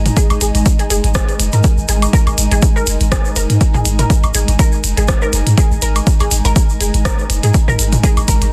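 A 122 BPM groove in 4/4 with a 55% swing on the sixteenths drives this cool, hypnotic slice of minimal techno, cut from a longer piece. An overdriven analog kick sits up front, joined by a deep sine sub bass with a punchy pitch-drop attack that moves between F#1 and G#2 and pumps against the sidechain. A clicky kit of hi-hats and rim clicks, tape-tinged and re-recorded in a large room with soft clipping on the snare, shares the pulse with a grainy, band-limited egg shaker and layered electronic toms and woodblock that carry overdrive and delay. From 0.2 seconds a juicy, squelchy blip pluck of pulse and sawtooth with a noise layer hovers between G#4 and A#4, colored by phaser, ensemble chorus, cassette tape character, delay and sidechain pumping. Beneath it all from the opening second, a cloudy, wave-folded granular pad spans G#3 to G#5, blurred by its own built-in reverb and pumping with the sidechain, while the rest of the mix stays dry in a dense, heavily limited modern master.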